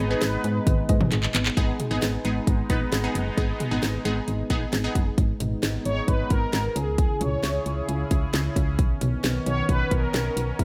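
A driving synth-pop groove at 133 BPM in 4/4 with a straight feel, this nocturnal passage in G# minor is cut from a longer piece and rides on an electronic house drum kit up front, with a punchy kick, cracking snare, metallic hats, handclaps and toms, entering at 0.2 seconds and marked by a drum fill from 1.1 to 1.6 seconds. Beneath it a solid FM bass, round and digital with a fast, decaying attack, holds the low end throughout. A sweeping resonant pad of detuned sawtooth layers with a sub octave swells slowly and sustains the chords under chorus, moving from G#m to C#m at 6.8 seconds and Badd9 after. Early on, a lush, bright unison pluck with a filter sweep and phaser carries the accompaniment until about 5.1 seconds, while a soft, dark pluck in the background spins chorused, delayed arpeggios. The melody comes from a mellow, brassy synth brass with chorus, phaser and delay, heard briefly at the opening and returning at 5.9 seconds, all set in light reverb and digital ambience.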